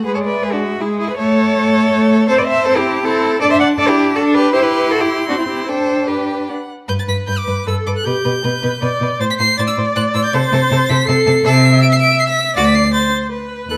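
Two bowed violins and a cello open this lively, graceful classical-period string quartet movement, with the viola joining at 0.1 seconds. The first violin carries the melody high above the ensemble, while the second violin shapes a supporting line beneath it; both players sound clear, smooth and even, with vibrato. The viola adds focused accompaniment with vibrato, and the cello anchors the bass with a rich, expressive tone, soft attacks, portamento and vibrato, and it sits up front alongside the viola. Moving in triple time with a rubato feel, the harmony passes from E7/G# through A and Am7/C before settling on G at 6.9 seconds, where a second section begins and travels through G/B and Am to close on D7(no3). Close, detailed microphones capture the players in a moderate recital hall reverb, and this passage is cut from a longer piece.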